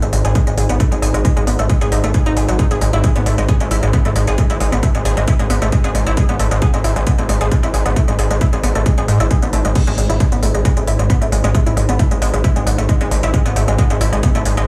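Driving peak-time techno with a hypnotic pull, this excerpt stays in a single straight 4/4 section throughout. A heavy, layered electronic kick enters at 0.4 s as the loudest part, overdriven and set in studio reverb, while a techno drum kit adds smooth hi-hats and crash cymbal through its own overdrive, with its hats and cymbals ducking under sidechain pumping. Up front, a gritty, nasal synth bass built from sawtooth and sine with oscillator sync carries a filter sweep, fast attack, tube saturation and distortion, and it also breathes with the sidechain. Above it, a bright, detuned unison pluck plays a punchy, warbling riff, its overdrive and dub echo giving it a vintage edge. Deep in the background, a dark analog drone holds a sustained note that evolves through pulse-width modulation and chorus, rounding out an echo-heavy mix with light reverb and small room ambience.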